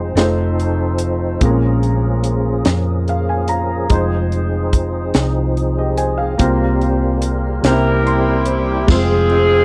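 Soulful and solemn, this slow gospel passage in a straight 6/8 is cut from a longer piece and carries the dry, close feel of a 1970s studio with a touch of light reverb. A warm, worn baby grand piano sits up front with long sustain, adding fills at 2.7 and 7.6 seconds, while a fat, lightly overdriven tonewheel organ holds sustained chords through a slow rotary speaker and chorus vibrato, its key click and percussive attack audible. A dark, round hollow-body electric bass anchors the low end, and a tight funk drum kit with a high-tuned snare and tight kick drives the groove on hi-hat, ride and crash. The harmony moves from F7 through Bbm7, Fm7 and C7sus4 to C7 before resolving on Fm. At 7.7 seconds a clear, punchy saxophone section enters with the melody, tight and lightly vibrato-tinged, and a jingly, band-limited tambourine adds a brief shimmer near the close.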